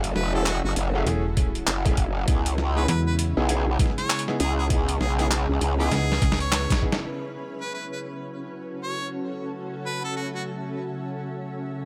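A warbly, nostalgic tape-like pad and a cloudy granular pad open this playful, swaggering glitch hop excerpt in F# minor at 99 BPM, joined at once by a growling, wobbling bass and a gritty, pitched-down boom bap kit of handclaps, filtered hi-hats and a medium-tuned snare. A clear harmonica carries the solo melody from 0.2 seconds with light vibrato and tape echo, while a bright, brilliant grand piano adds echoing stabs that pump with the sidechain. A snappy FM bass with a metallic attack and a thumpy, compressed kick drum join shortly after, giving the swung groove its up-front weight as the chords move from F#m7 to C#m7. A drum fill and a band accent close the first part, and the growl bass drops out at 5.9 seconds. From 7.1 seconds the drums and basses are gone, leaving the pads, with a filter sweep on the ambient pad, and the harmonica, which carries on until 10.4 seconds, over a return to F#m7.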